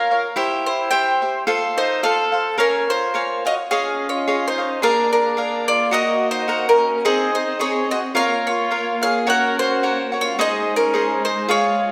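A lightly swung pulse at 108 BPM in 2/4 drives this short fragment of festive, romantic mariachi-flavored Mexican folk music. A bowl-back mandolin carries the melody up front, its picked double strings ringing with a mellow acoustic glow, while a crisp, bright cavaquinho picks out the accompaniment close beside it. A clear trumpet with vibrato plays a classical-style second line, set back at a distance in a roomy space. At 3.7 seconds the music settles into D-flat major, and a dark studio violin section enters with soft-attacked, lightly vibrating bowed chords that stay intimate and smooth-topped through to the end at 11.9 seconds. A lush recital-hall reverb surrounds the performance, giving the mix a romantic, open glow.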